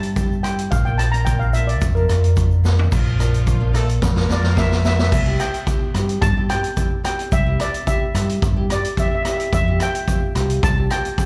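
Heard as a live gig through a club's PA with reverb, this sunny, carefree calypso excerpt at 109 BPM in C major has a shimmering lead steel pan, with slapback echo and digital delay, soloing from the start over a full-bodied, fingerpicked nylon-string guitar, a round, up-front fingered electric bass, a small-room street-band drum kit with a boomy kick and dark cymbals, and a grainy egg shaker in the background, while a distant, bright horn section in octaves with vibrato adds a second line from 2.9 to 5.1 seconds.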